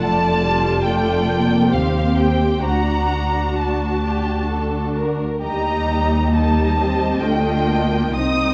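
Dark, warm production bathed in moderate concert hall reverb frames this yearning, melancholic slow romantic movement for string orchestra at 66 BPM in 3/4 with a rubato pulse, where a focused, up-front bowed violin section sings the high melody over a lush, even second violin line, an expressive, close viola section carries the accompaniment, and a smooth-topped cello section joins rich double basses in the bass, each section bowing with vibrato through this 8.5-second excerpt of a longer piece as the harmony moves from Dm/F through Cm/Eb and D to Eb.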